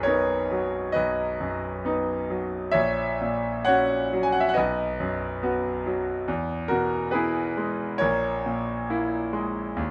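Melancholic and yearning, this brief fragment of a romantic nocturne sits squarely in the classical tradition and runs about 9.9 seconds. A solo concert grand piano carries everything, its rubato phrasing giving the 4/4 pulse an unhurried, breathing quality. The instrument sounds bright, brilliant and natural, reaching up to G#5, while the low end around A#1 adds a deep bass. Harmonies drift from B through F#7/A# and back to B, then move to E before settling on an unresolved A#m7b5 at 8.0 seconds, leaving the phrase hanging as the fragment ends. The piano is placed up front in a dark, warm production with a light touch of reverb.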